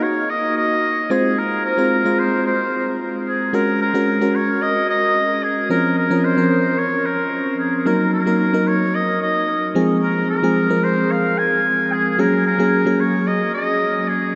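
From the first moment, a glassy, bell-like FM electric piano with a chorus effect and a noise layer plays mellow, decaying chords through Ebm, Fm, Gbadd9 and Bbmadd9, while a warm, classical-style oboe carries the melody with a soft attack and analog delay. This moody, dramatic pop excerpt sits in a huge ambient reverb that leaves the oboe sounding distant and roomy. The dreamy, dark-toned mix keeps both parts up front throughout its 14.4 seconds.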